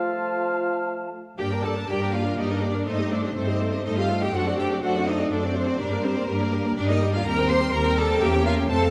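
Spirited and graceful, this quick classical-period movement for symphony orchestra moves at 123 BPM in 3/4 with a rubato feel, set in G minor and cut from a longer piece. It opens on an F chord with a brief woodwind passage: a hollow small flute group, a soft-edged clarinet in the background, an up-front oboe and a punchy bassoon, heard only within the first 1.1 s. A mellow French horn section holds sustained chords throughout. At 1.4 s the strings take over, with a clear violin section carrying the melody from the background and a rich, smooth-topped second violin section adding a second line. A lush, distant viola section fills in the accompaniment, while a focused cello section joins an up-front double bass section on the bass, as the harmony passes through Am7b5/G, D7/F# and Cm7/Eb to an Edim7, set in a moderate scoring-stage reverb.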